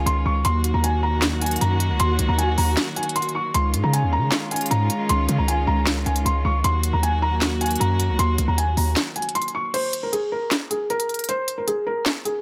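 Set in a small room with light reverb, this wistful yet triumphant trap cut runs at 155 BPM with a half-time feel, moving between Ebm and Dbadd9. A felt-muted upright piano carries the mellow, intimate melody through a low-pass filter and delay, over soft-attack chamber strings playing sustained sul tasto chords with light vibrato, a punchy, heavy 808 bass with a noise layer and a fast, decaying attack, and an up-front electronic kit of sharp snare, crisp hi-hats, handclaps and crash cymbal. The bass drops out at 9.0 seconds and the strings at 9.7 seconds, leaving piano and drums for a break that runs to the end of the excerpt.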